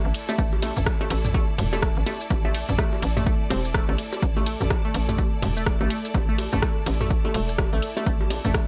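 Minimal techno with a hypnotic, cool mood and a swung sixteenth-note feel, cut from a longer piece built around a single suspended chord. A hollow, bouncy FM bass with a knocking attack and sidechain pumping sits low, while an overdriven electronic kick enters at 0.4 seconds, punchy and up front. An analog drum machine, also overdriven, supplies hi-hat, ride cymbal, rim click and shaker, joined by electronic bongos, cowbell and toms that sound tape-warm and re-recorded in a small room. A juicy, squelchy blip pluck carries the riff through phaser and tape echo, pumping against the kick, and behind it a distant, lush string section bows with biting vibrato. At 4.9 seconds a very quiet, flickering granular texture drifts in, all inside a digital ambience.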